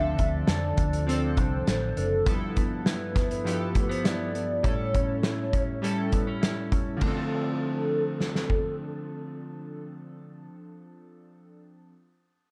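A warm, lightly reverberant production frames this short, wistful bedroom-pop fragment at 101 BPM in D dorian, moving through Dm7, G13 and A7 chords. A hollow, woody clarinet-like synth lead carries the melody through phaser and analog chorus, over glossy pulse-wave retro synth keys with a cassette-tape tint and a clean, fingered electric guitar bathed in lush chorus and vibrato. A round, foam-muted fingered bass plays only until 2.2 seconds, while a loose acoustic drum kit with a tight kick, medium-tuned snare and dark cymbals sits up front in a pumping room until 8.6 seconds.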